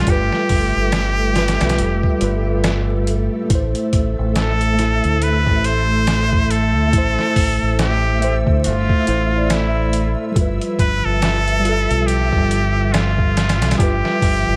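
Dark and brooding, this trip hop excerpt sets a nasal, straight-muted trumpet melody with vibrato and tape echo up front over a mellow tine electric piano with tremolo, a deep, round dub bass, gritty pitched-down sampler drums with a thumpy kick, background string-machine cellos carrying chorus and 12-bit grit, and a flickering, grainy high texture, all under a layer of vinyl crackle.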